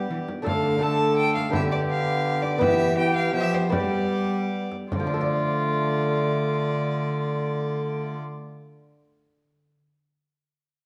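In a straight triple metre that slows between 2.1 and 4.9 seconds, this rustic, solemn renaissance-style consort dance, cut from a longer piece, sets a distant, reedy gut-string violin melody over a viola second line with light vibrato, a mellow fingerpicked double-strung lute, a punchy trombone, a dark up-front cello bass and a band-limited vintage frame drum that drops out at 5.1 seconds, all bathed in a recital-hall reverb.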